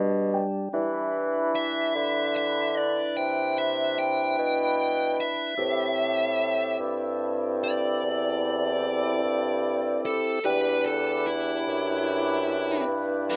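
A rough home-demo mix with light reverb frames this soulful, mournful slow blues in E minor, cut from a longer piece and moving at 49 BPM in 12/8. A dark, boxy baby grand opens with a brief fill and then sits in the background, while a fat tonewheel organ holds sustained chords up front through a slow rotary speaker, and a vintage-toned bassoon with light vibrato and a soft attack carries the bass line. At 1.6 seconds a smooth, overdriven, picked electric guitar steps up front with the melody over chords moving from Em7 to Am7 and back to Em7.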